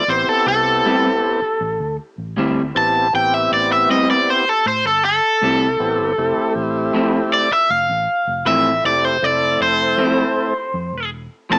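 In a straight 4/4 at 79 BPM, this brooding, mournful blues in A minor moves from Am7 to Fmaj7 at 6.2 seconds, carried by a dark, round, foam-muted fingered electric bass. An overdriven semi-hollow guitar sits up front and plays a bright, picked solo through the whole 11.6-second excerpt, while a thick tonewheel organ with light overdrive and a slow rotary speaker provides full accompaniment until 10.5 seconds. From 0.8 seconds, a second electric guitar through a small old amp adds twangy, slightly broken-up stabs bathed in spring reverb, and the whole mix has light reverb and a small-speaker sound.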